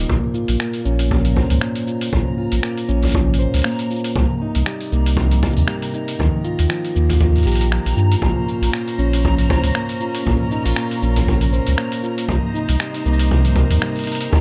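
Intimate and wistful, this folktronica excerpt moves at 118 BPM in Bb dorian with a light swing, built on a full-bodied fingerpicked steel-string acoustic guitar playing arpeggios up front, its tape echo and 12-bit sampler grit set over a round sine sub bass and a boomy, brushed kick. A muffled, overdriven lo-fi drum kit adds cabasa, finger snaps and hi-hat, while a reversed, granular swelling texture with a dreamy, detuned shimmer enters at 0.7 seconds in the background. A bowed string quartet with light vibrato returns at 8.2 seconds for sustained chords behind the guitar as the harmony cycles through Bbmadd9, Cm7 and Ebadd9.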